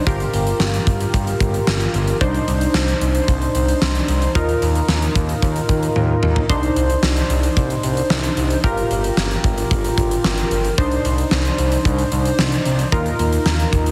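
A huge acoustic arena drum kit with a fat snare and punchy kick sits up front and breaks into a fill at 6.0 seconds, driving this cool synth-pop excerpt as a funky, chorus-treated polysynth comp with a plucky, mellow edge moves through Gm7, Cmadd9 and Ebsus2 over a smooth, detuned sawtooth-and-square synth bass, all bathed in a lush hall reverb and squeezed into a heavily compressed, radio-ready sound.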